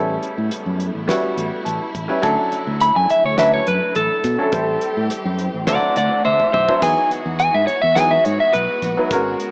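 Electric jazz fusion at 105 BPM in a straight 4/4, funky and soaring, with a bright, up-front grand piano comping and dropping a fill at 1.4 s over lush, bowed symphonic strings with vibrato and portamento in the background, a fingered electric bass, and a damped 70s kit with a fat snare, tight kick and dark cymbals that plays a fill at 6.3 s, while a lightly driven, slightly broken-up, compressed lead guitar enters at 2.8 s to sing the melody on top through moderate plate reverb and a small-speaker sound, moving over chords from A9 through Dmaj9, Am7 and D9 to Emaj9, tuned to A4 = 436 Hz.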